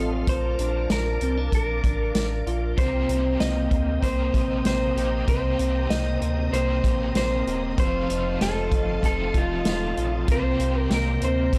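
This melancholic, haunting dream pop excerpt opens at once with a dark, clean, compressed electric guitar picking the melody through tape echo, over warbling, organ-like ensemble strings holding soft-attacked chords beneath an ensemble chorus. Alongside them, a slightly broken-up electric guitar plays fingered arpeggios with subtle chorus and tape echo, while a deep, thick saturated sub bass sits up front with a fast attack and mellow sustain. A vintage acoustic drum kit joins at 0.3 seconds, its punchy kick, medium-tuned snare and hi-hat carrying a natural, rolled-off studio-room sound close to the listener. At 2.8 seconds a bright, double-tracked overdriven guitar enters in the background, picked with tremolo and ensemble chorus. The piece moves at 96 BPM in a straight 4/4 in C dorian, tuned to A4 = 438 Hz, cycling through Bbmaj7, Cm7, F7 and back to Cm7. Light reverb and small-room ambience frame a dry, gritty hardware recording.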